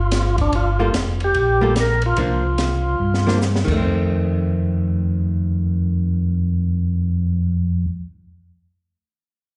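A percussive tonewheel organ opens this swinging, bluesy soul jazz organ trio excerpt, carrying the melody with key click and second-harmonic percussion through a slow rotary speaker and slapback echo. Beneath it, a mellow, round organ bass sits up front with chorus vibrato. An open jazz drum kit enters almost at once, its dark cymbals, high-tuned snare and boomy kick heard in a small acoustic room, and a drum fill runs from 3.0 to 3.8 seconds. A picked, compressed hollow-body archtop guitar joins in accompaniment at 0.8 seconds and carries on into the second section after the melody organ and drums drop out. The sound is that of a live gig heard through the venue's PA, with club reverb and a muffled top end.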